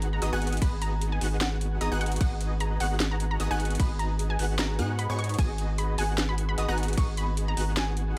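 A hard-clipped electronic kick sits up front from 0.6 s to 7.1 s beside a deep, thick, saturated sine sub bass in this emotional, lush future bass excerpt, set at 151 BPM in G# minor with swung 16ths over a half-time feel. A punchy, detuned sawtooth unison pluck carries the melody, and a mellow supersaw stab plays a riff through a moving notch. In the background, a brighter ring-modulated pluck and a fingerpicked, ringing Celtic harp play arpeggios. The plucks, harp, stab and sub bass all pump with sidechain, and the plucks and harp trail tape echo. A tape-warm trap kit adds a sharp snare, metallic hats and crash over a single G#m7 chord in a dry mix.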